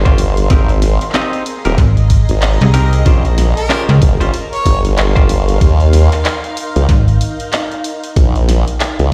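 Funky and swaggering, this glitch hop cut from a longer piece swings its 16ths over a knocking electronic kick and a layered kit of cracking snare, bright hats and handclaps, re-recorded in a small room. An up-front formant-sweep wobble bass with chorus holds the low end, joined from 1.8 s by a snappy, metallic FM bass, while a cloudy granular pad pumps to the sidechain and a clean semi-hollow electric guitar throws out stabs through dub echo. At 3.6 s a distant harmonica with light vibrato briefly sings a short phrase through its own dub echo, all heard as if played on a big sound system in a bare stone room.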